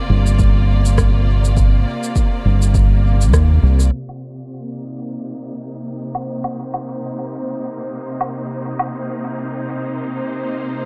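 This short ambient dub excerpt opens on a bright, lush symphonic string section holding sustained chords with vibrato, joined almost at once by a dark, round, punchy fingered electric bass up front and a deep, tape-warm electronic kick in the background. It sits at 102 BPM in C minor with a gentle 16th-note swing, and overdriven electronic shaker, rim click and woodblock percussion carries dub echo. The kick drops out at 3.5 seconds and the bass at 3.9 seconds as the harmony shifts to Cm7 and a filter sweep begins. That leaves the biting strings and percussion in a deep, meditative, dry space; the percussion stops at 8.9 seconds and the strings end at 10.9 seconds.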